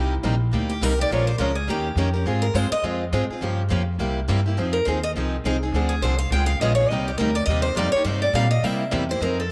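Fiery and swinging, this is a short cut of acoustic string swing in the jazz manouche style, driving along at 207 BPM in 4/4 with a light swing on the eighth notes, in C minor. An upright bass, played pizzicato on gut strings, sits up front with a woody, thumpy tone from the start, moving between Bb1 and C3. Two picked steel-string acoustic guitars carry the accompaniment from 0.0 s: one boxy parlour guitar up front, and a second concert-size guitar with fresh strings and audible finger squeak, also up front. At 0.7 s another bright, picked guitar with an auditorium-size body, fresh strings and finger squeak enters in the background on a second line between G4 and G5, as a guitar solo runs through the whole passage. The harmony moves quickly through minor sevenths, half-diminished and dominant chords, from Cm7 through Ab6 and Fm7 before landing back on Cm7 and turning to C7 at 8.6 s. A moderate spring reverb gives the small ensemble a lively, resonant space.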